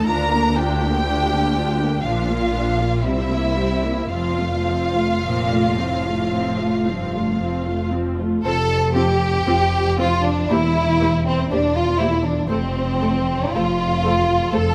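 The rhythm moves in a flexible 4/4, its rubato stretching and easing the pulse through a slow, lyrical romantic movement for string orchestra, cut from a longer piece. A violin section with a dark, woody tone and soft attack carries the melody, while a second violin section, lush and up front, sings a focused second line beneath it. The violas supply an expressive, close accompaniment coloured by portamento, and the cellos and double basses share the bass, the cellos warm and the basses smooth and even with only light vibrato. All five sections play from the opening to the close, and the harmony settles on F at 4.1 seconds and again at 12.5 seconds, framing a theme that returns at 8.4 seconds. A moderate concert hall reverb gives the ensemble a gentle bloom.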